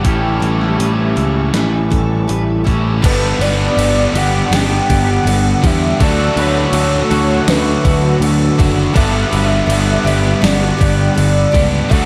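This excerpt of shoegaze-leaning dream pop rock opens at a slow 81 BPM in a straight 4/4, with a gated 80s digital drum machine sitting up front: thumpy kick, overdriven hits and a gated-reverb snare that sounds re-recorded in a small room, alongside crash and hi-hat. Beneath it, a dark, round overdriven picked electric bass drives low, while two biting overdriven guitars play bright, picked riffs in the background, one coated in lush chorus and the other trailing reverse reverb. A shimmering, octave-doubled twelve-string acoustic guitar picks full-bodied arpeggios with subtle chorus and analog delay, and a very quiet, mellow string machine cello patch holds soft-attacked sustained chords. At 3.0 seconds a third, double-tracked overdriven guitar riff joins, and at 3.1 seconds a velvety, detuned synth lead enters with a smooth melody touched by vibrato, chorus and analog delay. Over a light reverb, the harmony moves from A7 to G, D6 and back to G, tuned to A4 = 441 Hz, leaving a wistful, blissful haze.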